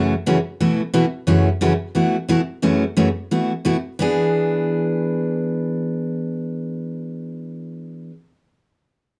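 A bright, full-bodied picked steel-string acoustic guitar with a jumbo body sits up front, comping in a playful, charming jazz swing that alternates F#m7 and B7sus4 before landing on E7 at 4.0 s. Moderate studio reverb surrounds the guitar within a dark, warm production, and this short cut from a longer piece ends at 8.1 s.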